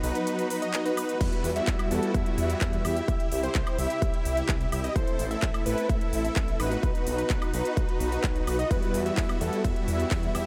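A cut from a longer festival progressive house track opens with a full arrangement already in motion: huge, detuned supersaw chords play an up-front riff with delay, while a thick unison lead spins arpeggios through cassette-tape coloring and its own echoes. Beneath them, a menacing, beating saw bass holds the low end, and a symphonic string section sustains lush, bowed chords in the background with gentle vibrato. A layered pop drum kit of crisp hats, cabasa, handclaps, woodblock, and crash and ride cymbals keeps a straight 4/4 pulse from the start. At 1.2 seconds a punchy electronic kick arrives up front, while sidechain pumping makes the strings, lead, supersaws and bass breathe throughout. The harmony moves from B through Emadd9, C and Am before returning to B at 6.8 seconds and Emadd9 near 8.7 seconds, giving the anthemic, emotional passage a yearning lift under a light reverb.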